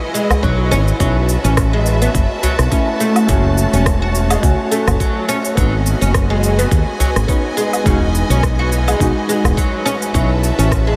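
Organic downtempo with a mystical, meditative air, where a plectrum-plucked oud arpeggiates through diffuse ambient delay over sustained, sidechain-pumped chords from a rich bowed string section, a growly, up-front fretless bass, a gritty, thumpy electronic kick, a deep, dry udu, and a produced kit of cabasa, crisp hi-hat, rim click and woodblock, while a felt-muted upright piano joins at 1.0 seconds with soft, pumping, delayed accompaniment, all within a dreamy, reverb-soaked mix.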